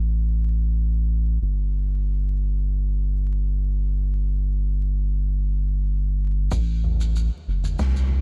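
A dry recording dusted with vinyl crackle opens this hazy, spacious ambient dub excerpt, which drifts in free time. For the first 6.5 seconds a deep, round sub bass with a square-wave edge sits up front on its own, sustaining its notes. At 6.5 seconds a punchy, overdriven electronic kick appears in the background alongside a natural-sounding soft-mallet kit of shaker, toms and a fat snare, and the kit plays until the cut at 8.2 seconds.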